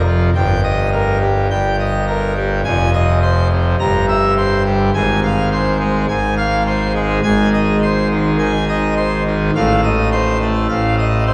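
A solo pipe organ on full organ, with bright mixtures and a crisp chiff, carries this jubilant, majestic classical toccata at 104 BPM in 4/4. Its baroque voicing spans F1 to Bb5 and moves through Eb/G, Fm7, C7/G, Fm/Ab and Ab before reaching F7/A at 9.5 seconds. The instrument is heard from further back in a wet church acoustic with a long 3.4-second reverb, in a passage cut from a longer piece that ends at 11.3 seconds.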